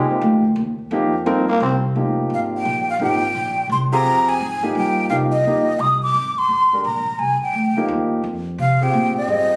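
A breathy, mellow silver flute carries the melody from 2.3 s, tongued and slightly unsteady, with vibrato, in this cool, intense modal jazz excerpt in F dorian, swinging in 3/4 at 172 BPM. It takes over from a raspy, growling trombone that opens with a short solo of scooped notes and ends at 1.8 s, while a concert grand piano with audible action noise and long sustain comps throughout and a woody, pizzicato upright bass grounds the harmony as it moves from F7sus2 to Fm9. The sound is close and up front yet bathed in a moderate large-room reverb, with the feel of a phone recording made in a club.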